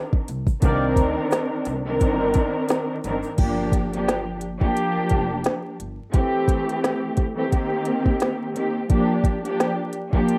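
A lush, bowed string section with vibrato and portamento opens this moody, reflective boom-bap hip-hop excerpt in G minor at 87 BPM with a swung 16th feel, joined by an up-front electronic kit of soft kick, woody snare, crisp hats, rim clicks and crash, a thumpy pizzicato upright bass on gut strings playing until 6.0 s, a grainy, very quiet egg shaker, and a brief, distant horn stab at 0.6 s soaked in slapback echo and plate reverb, all over Cm9, Gm7, Am7 and Cm7 chords in a rough home-demo mix dusted with vinyl crackle.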